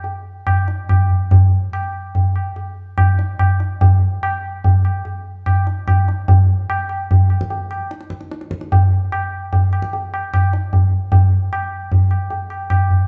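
A high-tuned tabla carries this short fragment of Indian classical music, sitting up front with a close, dry, acoustic sound and a short ring to each stroke. The mood is devotional and radiant, moving in a straight-feeling triple metre that gradually speeds up from start to finish. The passage shifts character at around 1.3 seconds and again at 11.1 seconds, with the longest stretch of playing falling between those points. Around the drum, a moderate reverb suggests a large studio where the performance was captured live in one room. Cut from a longer piece, it ends at about 13 seconds while the tabla is still gathering pace.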